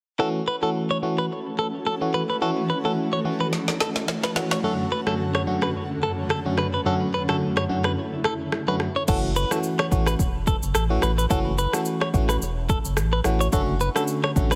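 Smooth and sultry, this afrobeats excerpt in F# minor at 108 BPM with a light 16th-note swing opens on a biting FM electric piano with chorus and a twangy, clean guitar riff with tape echo, joined by a blurred granular pad at 1.3 seconds, before an electronic drum kit with a deep kick and woody snare arrives with a fill at 3.5 seconds and a round sub bass joins at 9.1 seconds, all pressed into a heavily compressed radio sound as the chords move between F#m7 and Dmaj7.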